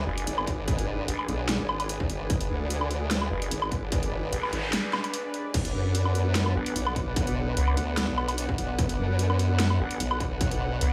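Set in a small, lightly reverberant digital room, this chaotic, menacing excerpt of heavy wobble dubstep at 148 BPM in half-time pairs two up-front, chorused and overdriven wobble basses (one a detuned sawtooth formant sweep, the other a nasal, resonant vowel sweep) with a distorted electronic kick and a tape-tinged drum kit of huge snare, bright hi-hats, crash and woodblock, while a thick, detuned sawtooth unison pad pumps underneath, a mellow, lo-fi warbling pad with phaser drifts in the background, and an electronic noise sweep sounds from 4.2 to 5.5 seconds as the harmony moves from G#dim to Bm.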